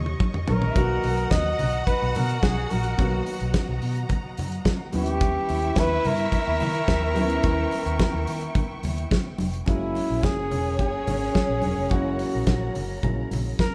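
A drum fill on a dry, damped 70s kit opens this glamorous, driving disco excerpt, with its fat snare and tight kick up front, while a dark, woody string section, a grand piano and a round, foam-muted vintage fingered electric bass sound from the first moment. A flugelhorn takes the melody from 0.5 s, played up front in a jazz style with vibrato and scooped notes. The bowed strings play a sul tasto second line, and a second, lush section holds expressive sustained chords in the background with portamento and a smooth top. The natural-sounding piano accompanies softly in the background, and thick-skinned, medium-tuned congas played with hard hands add warm percussion behind the kit. The harmony moves between altered dominant chords and a Bmaj7 before a new section arrives at 9.7 s on F#9, and the whole band plays live in one room, bathed in a moderate large studio reverb.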